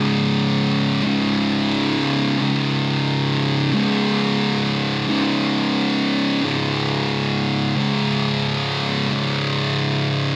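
Metal in a sludgy, ominous mood, this short excerpt cut from a longer piece features a lone thick fuzz guitar, electric, picked and double-tracked, sitting up front with distortion and slapback echo as it grinds through a low register on a C#5 power chord for 10.4 seconds inside a moderate large-studio reverb.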